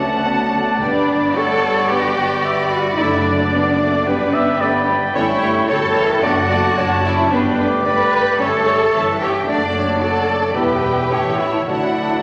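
An up-front chamber cello section leads the ear in this fast, dramatic romantic orchestral passage, its bowed tone soft in attack, expressive, and gliding with portamento. Set in D major at 110 BPM in 4/4 with a rubato feel, the stormy, restless mood comes from a distant, intense violin section carrying the melody while a pure, bright flute ensemble, a clear clarinet, a mellow cor anglais and a second violin section in the background weave second lines. Beneath them, a very quiet bassoon and a focused viola section supply accompaniment, a concert harp spreads ringing fingerpicked arpeggios, and a rich, smooth double bass section anchors the low end. A very quiet French horn section holds sustained chords from 0.8 seconds, and soft-mallet timpani enter with a round D at 11.7 seconds. The harmony moves among D, G, D/F#, A7/G, Em and A before settling on D, all bathed in a spacious scoring-stage reverb in this brief cut from a longer work.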